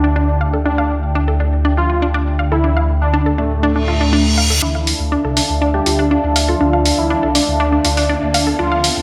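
A rumbling, beating detuned saw bass sits up front in this cinematic, driving melodic techno passage in D minor at 121 BPM, holding low beneath a Dmadd9 chord taken from a longer piece. Over it, a moody, chorused analog pad swells in on a slow attack and sustains dark chords under a filter sweep, while a punchy, full-bodied unison pluck spins arpeggios through digital delay. A thick, nasal unison lead with warbling vibrato carries the melody through its own delay. A reverse cymbal enters at 3.8 seconds, and from 4.6 seconds a build-up begins, with a riser and filter sweeps on both the arpeggios and the lead. Electronic hi-hats join up front at 4.9 seconds, layered and re-recorded in a large room with low-pass filtering. A lush hall reverb and bright 1980s-style digital production give the track a polished, spacious sheen.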